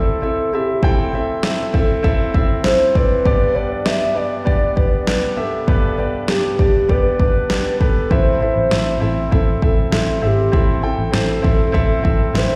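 Piano-driven pop with a bittersweet, dramatic mood, this short cut from a longer piece moves in a straight 4/4 over a simple harmony that shifts from Am to G and back to Am at 8.1 seconds. A hollow, woody synth lead, soft-edged and sustained with vibrato, carries the melody from the start, thickened by chorus and a slapback echo. Beneath it, a clear, intimate grand piano plays the accompaniment up front, its action noise audible and its tone natural, also touched by slapback echo. A layered, electronic house drum kit with a deep kick and snare and a tape-warm sheen enters at 0.8 seconds and sits prominently in the mix. A dark, round, foam-muted electric bass joins at 8.1 seconds, lending amped weight to the low end. The whole performance sounds like a live gig heard through a venue's sound system, bathed in light reverb, digital ambience and the reverb of a recital hall.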